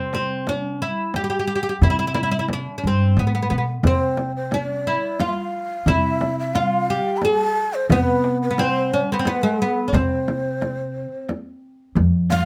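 A light reverb lends this short cut from a longer Persian modal ensemble piece a gentle sense of space. The mood is festive, moving in a triple metre with a straight feel. Up front, a bright, woody fretless oud carries the melody, its plectrum-plucked double strings sounding deep, while a pizzicato upright bass with steel strings supplies an acoustic foundation beneath it. From 0.1 s, a dry frame drum and a tight, very quiet tombak keep the percussion close. At 3.9 s, a breathy, mellow ney enters, also up front, with a second line, its end-blown reed cane tone carrying vibrato, a crisp attack and an unsteady quality.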